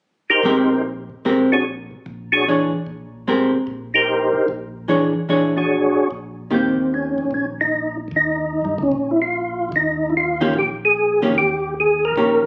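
A swung eighth-note feel in four drives this greasy, swinging jazz cut, taken from a longer piece. A percussive tonewheel organ carries the melody up front, its round, dark tone marked by third-harmonic percussion, chorus vibrato and a slow-turning rotary speaker. A clean, picked hollow-body electric guitar sits equally close in accompaniment, sits out at 7.6 seconds and returns at 10.4 seconds. Beneath them, a mellow second organ holds down the bass well back in the mix, its clean voice showing key click and its own slow rotary swirl. The harmony rocks between Abmaj9 and E13 before settling on Eb7 as the second section begins at 6.5 seconds. A moderate large-studio reverb and compressed, phone-captured room ambience give the sound a live, slightly rough-edged character.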